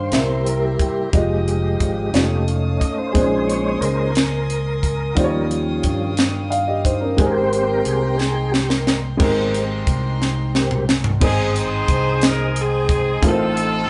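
A clear tonewheel organ leads this hopeful, reverent slow gospel fragment in 6/8 at 60 BPM in Ab major, soloing through the first 9.2 seconds with a slow rotary speaker and chorus vibrato over rich chords like Fm9, Bbm11 and Abmaj9. A dark, worn baby grand piano with audible action noise, a fingered electric bass with a direct, amped tone, and a crisp fusion drum kit with a high-tuned snare and up-front fills support it, while a soft, floating string section hovers high until 11.2 seconds. At that point a punchy pop-style horn section takes over the melody with vibrato, all sitting in a moderate studio reverb that suggests a band playing live in one room.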